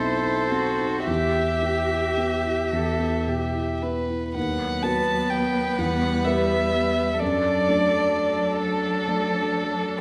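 A reverberant recital hall surrounds this solemn, elegiac passage from a slow romantic piano quintet movement, cut from a longer piece and moving in a rubato 6/8. Up front, a warm violin carries the melody with vibrato, portamento and soft attacks over a dark, mellow baby grand whose action noise is audible, while a second violin played sul tasto adds a close, intimate line and a cello in the background shapes its own expressive second line. At 4.3 s a distant viola joins the accompaniment as the harmony passes through B/D# and Em to D/F#.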